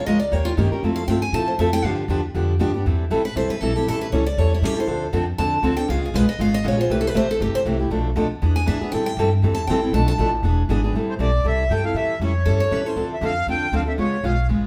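A picked steel-string acoustic guitar opens the excerpt with a bright, virtuosic solo, finger squeaks audible as it runs through the upper register. This is a fast, swinging jazz manouche tune in A minor at 237 BPM, with a lilting swing on the eighth notes. Beneath the solo, a second picked acoustic guitar with fresh strings sits up front in the accompaniment, and a pizzicato upright bass adds a woody, warm foundation. The changes move through chords such as Am7, A7, Dm7, C#7 and Bm7b5 to E7. Around 11.1 seconds, a reedy accordion takes the melody up front with a slow beating shimmer, as the tune moves into a new section. The band plays live together in one room, and a moderate studio reverb gives the sound a natural sense of space.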